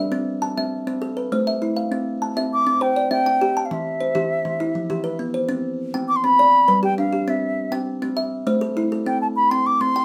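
Rippling and warm, this excerpt of Southern African traditional music moves in a 12/8 mbira-style interlocking cycle at 134 BPM in C major, tuned slightly below standard pitch. A woody, thumb-plucked kalimba opens alone with short, airy arpeggios over chords like C, Am and Em. A pure, wooden flute with vibrato and a crisp attack enters at 2.5 seconds to carry the melody, and both sit up front in a modest small-room reverb.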